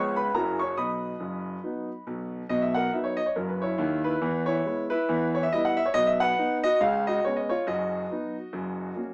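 Playful and swinging, this short stride piano passage in B major moves at 139 BPM in 4/4 with a lilting swing on the eighth notes. A single concert grand piano carries everything on its own from 0.0 to 9.1 seconds, ranging from F#1 up to D#6 with deep bass and long sustain. The instrument sits up front and sounds clear and intimate, its audible action noise adding a close, tactile quality, though a boxy edge creeps into the tone. The harmony moves from F#7 to B, then through E, Em and back to B before C#7, B/F# and a closing F#, with a fresh statement of the opening material beginning at 2.5 seconds. A moderate studio reverb gives the piano a modest sense of space, while the overall sound has the character of a small speaker, and the clip is cut from a longer piece.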